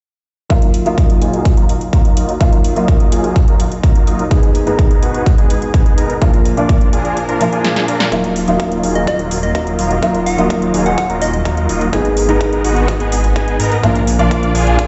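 Festival progressive house at 126 BPM in Eb harmonic minor, powerful and euphoric, built on a punchy, up-front electronic kick and a big-room kit with a punchy snare and metallic hats, while a huge, bright detuned supersaw lead with digital delay carries the riff over a felt-muted upright piano whose mellow, intimate tone lets its action noise come through, and a lush supersaw pad with phaser sits in the background from 1.3 seconds, all cycling through Ebmadd9, Abm and Bb. The kick drops out at 7.2 seconds and a drum fill follows at 7.6 seconds, then at 8.1 seconds a thick, menacing, saturated detuned saw bass arrives as a build-up begins and a filter sweep moves across the supersaw. A round, keys-like FM lead with chorus adds a brief gentle melody from 9.0 to 11.4 seconds, and the whole excerpt rings in a bare stone room with a dark top end.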